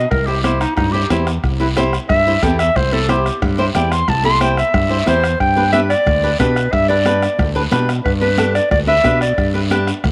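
Danceable and festive, this cumbia excerpt puts a clear, jazz-style clarinet up front with light vibrato and scooped notes soloing over a bright, punchy fingered electric bass, a fingerpicked flamenco guitar with fresh strings, a close, dry bombo struck with a soft beater, ringing high-tuned congas in the background and a raspy, vintage guiro, all set in a small room with light reverb as the harmony moves from C to G at 5.4 seconds.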